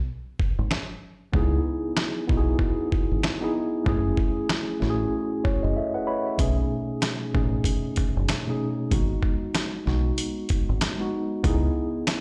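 A dusty, sampler-style drum kit opens this gritty, reflective boom-bap hip-hop excerpt at 95 BPM in 4/4, its compressed hi-hat, thumpy kick and medium-tuned snare swung on the sixteenths and sitting up front. A deep, round fingered electric bass joins at 0.6 seconds, dark and punchy, holding low between F#1 and C#2 in F# dorian. From 1.3 seconds a mellow tine electric piano, heard through its built-in speakers with cassette tape coloring and plate reverb, lays down a rootless C#m9 before moving through F#m7 and G#m7 and returning to C#m9. The drums drop out briefly from 5.8 to 6.4 seconds, closing the opening break. The whole mix carries the feel of a big sound system played in a bare stone room, with a light reverb hanging around the parts.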